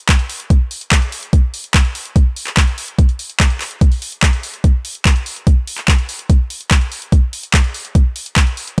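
A straight 4/4 pulse drives this intense trance fragment at 145 BPM, where a layered, knocking electronic kick drum with a tape-warm tone sits up front from 0.1 seconds alongside an overdriven techno drum kit of handclaps and hi-hat, all inside a digital ambience.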